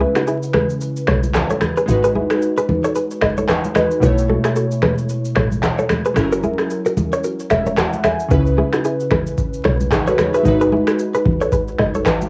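Wrapped in vinyl crackle and the light reverb of a small room on a home cassette recording, this mellow, smooth afrobeats excerpt swings through a break lasting until 8.3 seconds: glassy, chorused digital keys sit up front carrying the chords and add a fill from 7.2 seconds, a clean, picked electric guitar with tape echo plays a scooped riff, a dark, woody log drum bass punches through transformer saturation, bright thin-skinned congas add percussion, and a booming, overdriven analog drum machine brings a deep kick, finger snaps, handclaps, rim clicks and shaker.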